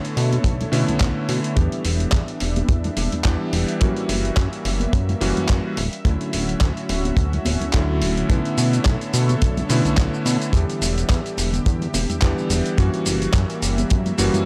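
A clear, clangy vintage electric grand piano and a lush, detuned unison pad that both pump to the sidechain open this groovy, sleek nu-disco excerpt at 107 BPM in B minor with a swung 16th-note feel, alongside a gritty, overdriven sampler-style kit of cabasa, handclaps and hi-hat, then a glossy, nasal chorused synth bass, ringing high-tuned congas in the background and a tight, dry kick drum that sits up front, with a barely audible electronic riser from 12.8 s, all cycling through Bm11, Em7, F#7b9 and Dmaj9 in a dry, hardware-recorded sound.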